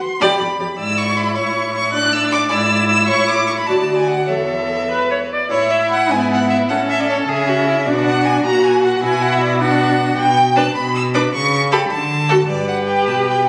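A quick, graceful and cheerful classical-period string quartet movement in 6/8 at 103 BPM in A major, cut from a longer piece, in which a rich, focused first violin carries the up-front melody with vibrato over a smooth, even second violin line, an expressive viola accompaniment touched with portamento, and a warm, intimate cello bass with soft attack and airy bowing, each part bowed by a single player in a wet recital-hall reverb captured on a phone in the room with added studio reverb and compression.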